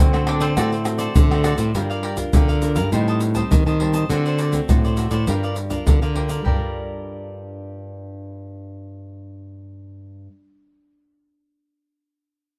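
A tight surdo anchors the up-front percussion of tube shaker, pandeiro and tamborim, played with soft hands in a small-room sound, driving this yearning, bittersweet samba and choro fragment at 102 BPM in a straight 4/4 in G minor. A fingerpicked nylon-string guitar sits up front with warm, classical accompaniment, while a second nylon-string guitar carries the bass in the background, and a crisp, bright cavaquinho picks out its accompaniment high above. In the opening moments a background bowl-back mandolin plays the melody with its double-string shimmer, alongside a mellow, breathy trombone with light vibrato and a jazz touch on a second line, both finished by 1.7 seconds. The harmony moves from D7 into Gm7, Am7b5 and back through D7 to Gm7, giving the strings a longing, minor-key pull. The percussion drops away at 6.6 seconds, leaving the guitars and cavaquinho to close the passage in a dry, close and detailed sound.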